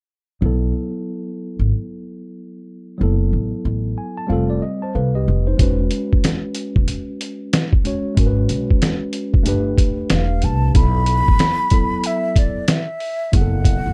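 Jazz-hop with a cool, smoky mood: a worn, slightly out-of-tune electric piano with light overdrive and a woody, growly pizzicato upright bass open together, a gritty, pitched-down sampler-style drum kit with a thumpy kick enters at 5.6 seconds, and a breathy, mellow flute with vibrato, slapback echo and plate reverb carries the melody from 10.1 seconds, inside a dark production with light reverb.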